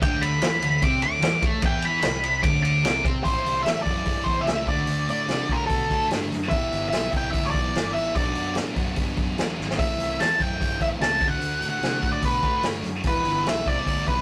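A straight 4/4 beat at 147 BPM from a punchy, rolled-off vintage drum kit drives this gritty, smoky blues rock power-trio and southern rock fragment: an up-front, dark octave-fuzz lead guitar solos over the opening 3.3 seconds and then carries the melody, while a double-tracked, thick fuzz guitar riff and a bright, growly fingered electric bass play throughout and carry the Am, D, Em and Bm changes, with a drum fill at 9.6 seconds, the whole captured in a rough rehearsal-room recording with tube saturation and moderate studio reverb.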